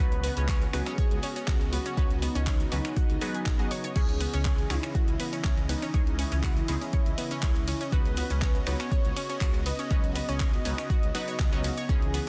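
A dense, heavily limited mix with little reverb opens this dreamy, driving progressive house excerpt at 121 BPM in a straight 4/4, where an overdriven electronic kick sits up front from 0.5 seconds and a deep, rumbling, detuned saw bass pumps beneath a small-room deep house kit of hi-hat, handclaps, finger snaps, ride and crash, with a grainy egg shaker tucked behind. A thick, bold unison lead with vibrato and digital delay carries the melody over a lush, full-bodied supersaw pad whose phaser-washed chords move through B/C# and C#madd9. A round, chorused analog pluck spins arpeggios up to C#6, while punchy unison pluck stabs with phaser and delay pulse in the background.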